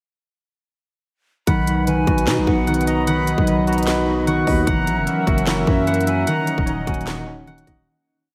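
Hip hop in a trap style, this short, wistful and dreamy piece rides a half-time beat from the trap drum kit, whose hard-clipped kick, sharp snare layered with clap and crisp hats with fast rolls sit up front. A growling, buzzy 808-style bass plays long sub-bass notes that follow the kick, with pitch slides. Over this, a bright, barky tine electric piano repeats a falling arpeggio in eighths like a sampled loop through a low-pass filter and analog delay, while a fingerpicked concert harp rings out a pedal-note arpeggio under its own low-pass filter. A smooth, detuned analog pad with chorus holds sustained chords in the background, and an airy jazz flute with vibrato and analog delay adds a sparse, expressive counter-melody. The parts arrive together at 1.5 seconds for a hook that moves from B to F#7 to D#m7, all bathed in a lush hall reverb, and the music fades out from 6.3 seconds, with the harp ringing on until 8.3 seconds.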